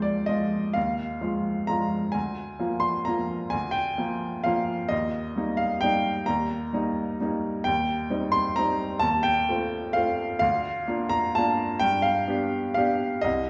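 A lone upright piano opens this playful, elegant classical waltz, its clear, woody tone carrying the audible clatter of its action. The piece moves in 3/4 at around 130 BPM, with uneven beats and a free rubato feel that gives the dance a graceful lilt. Set in Eb major, the harmony passes from Fm7/Eb through Bb7/D and settles on Eb at 4.9 seconds before moving on through Cm/Eb, F7/Eb and Bb/D to a G7 at 11.8 seconds. The piano spans a range from C2 up to C6 and sits up front with an intimate, natural character, while a wet recital-hall reverb with a 1.4-second decay places the listener further back in the room. The passage is cut from a longer piece and ends at 13.5 seconds.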